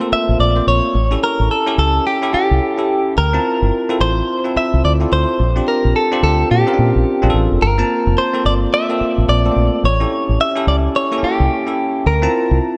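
Punchy and bouncy, this short new jack swing R&B passage in D minor moves at 108 BPM with a swung sixteenth-note feel, cycling through Gm11, A7, Dm7 and Bb69 chords. A clean, compressed, direct-recorded electric guitar carries the picked melody through a diffuse ambient delay, while a bright, bell-like tine electric piano with subtle chorus fills in the accompaniment. Underneath, a dark, round, foam-muted fingered bass sits up front, and a lush plate reverb soaks the whole mix in a dreamy haze.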